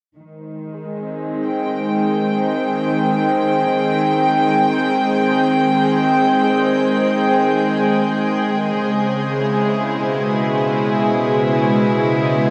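A string section opens this luminous, weightless ambient excerpt, holding pure, floating chords up front over an Abmaj7 harmony that shifts to Dbm7 at 8.8 s. An organ-like drone settles in the background with ensemble chorus and its own reverb, while a soft, round pluck plays barely audible arpeggios until 8.6 s. A long shimmer reverb and a dark production give the recording a distant, suspended glow.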